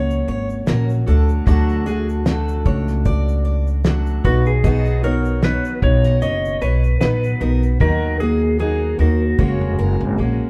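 Acoustic pop at 76 BPM with a light sixteenth-note swing, heartfelt and carefree, where a clean lap steel guitar carries the melody with slide and volume swells over a full-bodied jumbo acoustic guitar fingerpicking the accompaniment, a quieter picked concert acoustic guitar adding arpeggios, a woody pizzicato upright bass sitting up front, and a dark, cloth-damped drum kit with a fat snare, tight kick and shaker that plays a fill from 7.8 s, the band captured live in one room with moderate large-studio reverb as the chords move from F# through D, B and D#m to F#add9.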